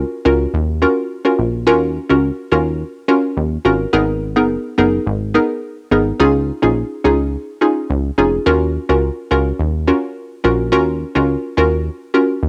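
A hollow, detuned square-wave pluck with chorus and a cassette-tape tint starts together with the bass at the top of this sultry, hypnotic afrobeats piece at 106 BPM in Eb minor, riding up front over a punchy, funky analog bass whose sawtooth-and-square tone has a fast attack and a decaying filter pluck. The bright, bouncy pluck moves through Ebm7, Abmadd9 and Dbadd9 before the progression returns to Ebm7 at 8.5 seconds as a new section begins, and it stops at 12.3 seconds, just before the bass. The home cassette recording sits in a moderate studio reverb, and the clip is cut from a longer piece.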